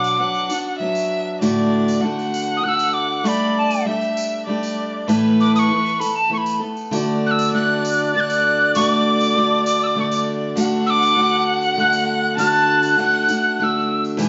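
A straight 3/4 sway at 99 BPM carries this nostalgic, hopeful acoustic folk piece in D major, cut from a longer performance and moving from Bm through D/A, Gsus2 and Asus2 before landing on D at 6.9 seconds. An airy, tongued tin whistle with vibrato and a breathy chiff sits up front and takes a featured solo through the opening 6.9 seconds. Beneath it, a bright, freshly strung picked steel-string guitar holds the accompaniment, a biting bowed erhu with portamento adds a second line, and a jingly tambourine sits close and dry in the background, all captured live in one room with a lush large-studio reverb and a softened top end.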